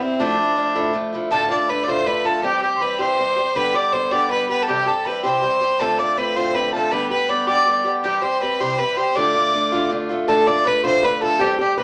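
Celtic folk jig in D dorian at 107 BPM in 6/8, spirited and driving, cut from a longer piece, with an earthy bowed fiddle carrying the melody up front over a boxy picked acoustic archtop guitar, an airy tin whistle with tongued chiff adding a second line from 1.3 seconds, and a dark, clean hollow-body electric archtop joining at 10.3 seconds, all set in a wet small room.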